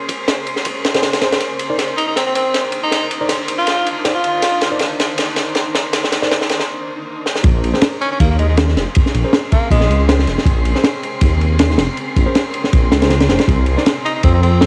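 Drum and bass with a jungle edge, dark and atmospheric, where a crunchy, gritty breakbeat kit sits up front over a blurred granular cloud pad and an airy wind-like noise texture, clean tine electric piano stabs with dub echo drift in the background, a bright jazz-style tenor saxophone with vibrato and scooped notes plays fragments, and a thick, menacing detuned saw bass drops in at 7.4 seconds after a short break, all carrying a worn cassette-tape character.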